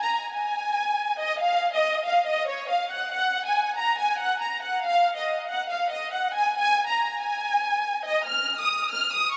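A violin section carries this dark, menacing hip hop fragment on its own, playing from the very start until 9.4 seconds, where the short cut from a longer piece ends. The strings sound lush and expressive, with vibrato, soft attacks and portamento giving the bowed ensemble a brooding, cinematic weight. Sitting high in register, the section feels up front yet oddly distant at the same time, and a tape echo trails behind its lines. The half-time feel lends the passage a slow, heavy sway. A huge ambient reverb with a long 4.9-second tail surrounds the strings, and a brief new section arrives at 8.3 seconds just before the close.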